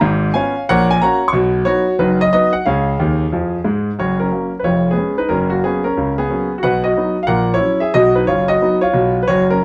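A swinging 4/4 pulse at 182 BPM drives this playful, exuberant stride piano passage in F# major, cut from a longer piece. A clear concert grand plays solo throughout, its deep bass and vintage, up-front sound set in a moderate small-room reverb, with a fill at 3.0 s leading into a new section at 4.0 s. The harmony moves through chords such as C#7/G#, F#/A# and B before settling on B.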